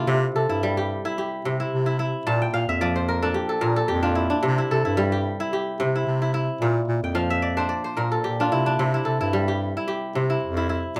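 A rough home-demo mix with a wet studio reverb frames this short cut from a longer piece of hypnotic, flowing West African string and xylophone music, its gently swung 4/4 groove moving between C and Bb chords. Up front, a ringing, crisp, fingerpicked acoustic kora spins arpeggios and adds fills at 2.3 and 7.0 seconds. Beside it, the warm bass clarinet holds the bass line in a close-miked, jazz-style solo with vibrato.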